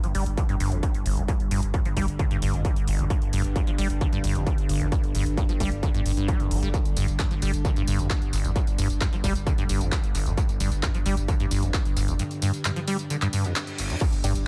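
Driving peak-time techno at 132 BPM in a straight 4/4, relentless in mood, cut from a longer piece and resting on a G5 chord. A distorted, overdriven electronic kick sits up front from 0.4 seconds, beside a dry, punchy analog drum machine of hi-hats, ride, crash, handclaps and tambourine, overdriven and thrown into dub echo, its hats, percussion and cymbals pumping under sidechain. Underneath, a thick, tube-saturated sine sub bass holds a low G under a low-pass filter, while a squelchy, resonant sawtooth acid bass riff, also up front, moves between G1 and G3 with filter sweeps, lush chorus and dub echo. An evolving, nasal analog drone built from saw and pulse waves, with pulse-width modulation and a moving notch, swells in slowly behind everything with chorus and a long release. A background reverse cymbal enters at 13.3 seconds, and a muted, detuned filtered dub chord stab with phaser plucks in at 14.2 seconds. 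The mix is echo-heavy with light reverb, and the bass, drone, stab and drum machine share a sidechain pump.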